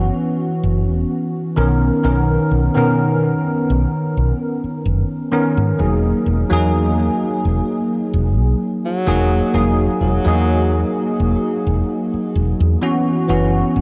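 Dreamy and faded, this vaporwave fragment floats on a bell-like tine electric piano, bright and clean through analog chorus and delay, over a round, woody fretless bass. The two hold the music together throughout, moving through chords from F#7sus4 into long stretches of Bmaj9 and Emaj9#11. At 8.9 seconds a tenor saxophone slips in briefly with a warm, subtoned jazz phrase and gentle vibrato, trailed by tape echo, all washed in a huge ambient reverb and dark, cassette-worn production.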